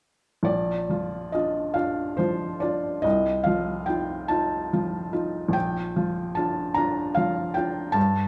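A felt-muted upright piano sits up front in a wet recital hall, its hushed, mellow tone trailing into a reverb that hangs for about 1.5 seconds, with the soft clatter of the instrument's action clearly audible. This short fragment of a longer romantic nocturne is dreamy and tender, unfolding slowly in 6/8 at roughly 46 to 50 beats per minute counted in dotted quarters, with a free, rubato feel. The solo piano spans from Bb1 up to Bb5 in Bb major, its thin felt giving the sound an intimate, vintage character. The harmony rests on Bb, moves to F7/C at 3.0 seconds, and settles back on Bb at 5.5 seconds. The playing begins at 0.4 seconds and lasts until 8.3 seconds, offering a brief, smooth glimpse of a gentle night piece.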